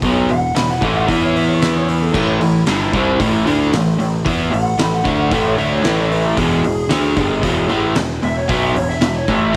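A straight 4/4 groove at 113 BPM drives this gritty, swaggering blues rock and southern rock power-trio excerpt, where a crunchy, double-tracked overdriven guitar riff sits up front over E5, Am7 and E7#9 chords, a growly, overdriven picked electric bass rumbles in the background, an oversized low-tuned drum kit with punchy kick, fat snare, hi-hat and dark crash cymbals pumps in a bright stone room, and from 0.3 s a lo-fi lead guitar through a small cranked amp solos above, the whole mix framed by light reverb and small room ambience.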